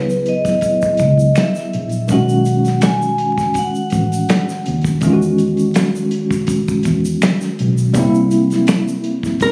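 R&B and neo-soul with a smooth, relaxed swing, cut from a longer piece, where a ringing vibraphone with hard mallets and fast motor vibrato carries the melody until 4.6 seconds over a worn, slightly out-of-tune tine electric piano with medium tremolo, a round, foam-muted vintage electric bass, a dry, dark soul drum kit with tight kick and hi-hat, a tube shaker with finger snaps in a small room, and a bright fingerpicked nylon-string guitar entering at 9.4 seconds, all wrapped in light reverb, phone-recorded room sound and vinyl crackle.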